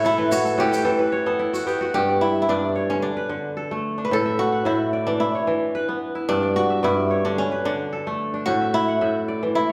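Bathed in the lush reverb of a recital hall, this hypnotic West African traditional piece sets two crisp, fingerpicked koras up front, one carrying the melody while the other rings out arpeggios across a broad range, opening with a kora fill as a grainy, mellow tube shaker plays only until 1.7 seconds.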